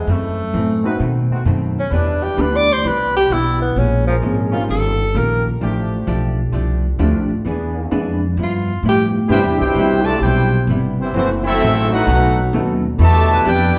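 A warm, subtoned tenor saxophone opens this swinging, joyful big band swing passage with a solo over mellow background trombone chords, woody pizzicato upright bass, dark, clean hollow-body guitar and a vintage concert grand piano, until at 9.3 s a clear trumpet section takes the melody while a bright trombone section adds a second line, the whole band heard from further back in a large studio.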